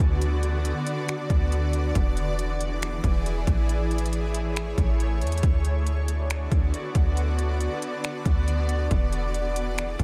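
A shimmering, ethereal ambient pad of sustained chords with chorus, reverb and sidechain pumping opens this blissful, dreamy half-time cloud-rap excerpt at 138 BPM, alongside a deep, boomy, clean 808-style bass and a trap kit of hard-clipped kick, crisp hi-hat and finger snaps, drifting through D6, E7 and Amaj7 in a light digital ambience.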